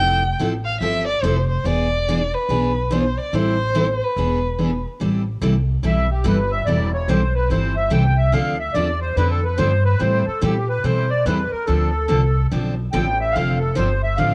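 Acoustic string swing in the jazz manouche style, this fiery, virtuosic excerpt in A minor at 144 BPM opens with a bowed violin singing the melody with vibrato and portamento until 4.9 seconds, over a bright, full-bodied picked steel-string guitar and a woody, thumpy pizzicato upright bass on gut strings, before a sweet, reedy accordion with light tremolo tuning takes the solo from 5.9 seconds across Am9 and Dm9 harmony, all captured as a home cassette recording with small-room ambience and light reverb.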